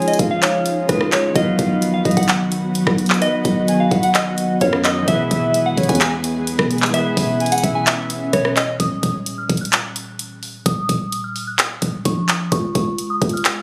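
A phone-in-the-room recording with studio reverb and compression frames this dark, brooding half-time trap cut in Eb minor at 129 BPM, where a soft, warbling FM synth bell carries the melody over a growling 808 bass and an up-front trap kit of knocking kick, bright hi-hats, handclaps and rim clicks, while a round, phased octave-layered lead sits beneath until 8.3 seconds and a clear concert grand piano and an ethereal detuned pad hold on until 8.8 seconds, after which a filter sweep on the bell runs to the end at 13.6 seconds.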